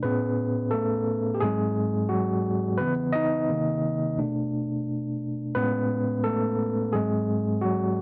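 An overdriven tine electric piano plays alone and up front for the full 8 seconds, its barky, gritty tone pushed through a combo amp with a fast tremolo shimmering over chords that move from Amaj9 through G#7, C#m7 and a descending run of minor sevenths before returning. The feel is smooth R&B with a light sixteenth-note swing. Captured in a dry, close 1970s-style studio sound with a touch of reverb, this short cut from a longer piece carries a warm mood.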